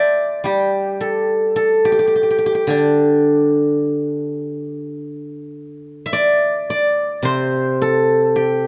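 This Chinese traditional solo for plucked strings is pastoral and flowing, unfolding in free rubato across a short 8.7-second fragment cut from a longer piece. A steel-string zither, played with fingerpicks, carries everything alone across a range from its low register to high notes, its silvery, ringing tone captured up front by close, detailed microphones in a nearly dry space. A new section begins at 5.0 seconds and carries the fragment to its end.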